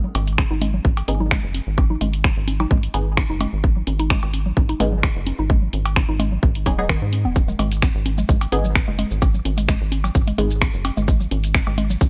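A dry excerpt of hypnotic, cool minimal techno with a lightly swung 4/4 feel. A tight, tape-warm electronic kick sits up front beside a garage drum kit of finger snaps, hi-hat and shaker, while analog congas and cowbell with tape echo open the piece at 0.0 seconds and a rubbery, nasal square-wave bass pumps with sidechain compression. A woody, round mallet-like synth pluck carries the riff through chorus and delay, and from 1.1 to 10.5 seconds a muted, detuned dub chord stab drifts through phaser and tape echo.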